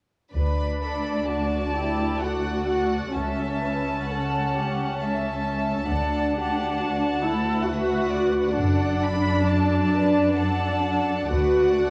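From 0.3 s the whole string orchestra sounds together: violins, violas, cellos and double basses, all bowing sul tasto in a slow, serene romantic movement in triple time with a flexible, rubato feel. The first violins carry a pure, floating melody high in their range with a soft attack. Beneath them, the second violins sing an intimate, warm line with vibrato and a smooth top. The violas hold an up-front, woody accompaniment, while the cellos and the more distant double basses anchor the bass with a dark, lush weight. The harmony moves from D through A/C# and back to D, then to D/F# and a Bm/D at 11.3 s. A scoring-stage reverb lends the ensemble a spacious bloom, and a worn cassette-tape character adds a warbling pitch drift to this passage cut from a longer piece, which ends at 11.9 s.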